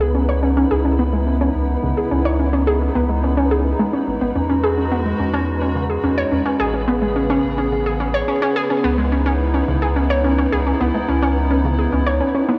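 IDM in C# minor at 107 BPM, this melancholic, eerie excerpt drifts through a cycle of C#m9, Emaj9 and Amaj9 before returning to C#m9 at 8.8 seconds. A hollow, flute-like pad holds airy, detuned chords with slow attacks and long releases, softened by chorus. Up front, a dusty, lo-fi pluck plays mellow arpeggios, its short decays roughened by 12-bit sampler grit and trailed by tape echo. Beneath it, a round sine sub bass sits deep and close until 12.2 seconds, while a grainy, flickering granular texture hovers in the background on a single high note with its own reverb. The whole mix is bathed in a huge ambient reverb and the worn, warbling pitch drift of old cassette tape, giving it a faded, haunted haze.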